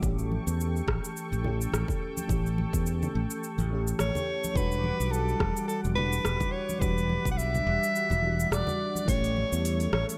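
A relaxed, wistful sunset chillout groove at 106 BPM opens on a round, chorused FM electric piano with delay, a thick detuned unison pad, a growly fingered electric bass and an overdriven deep house kit with metallic hats, rim click, shaker and a deep layered electronic kick, joined at 0.3 s by very quiet congas, all swinging gently over A7 and Em9 until a close-miked jazz soprano saxophone with vibrato, scooped notes and digital delay takes the solo at 4.0 s in light digital ambience.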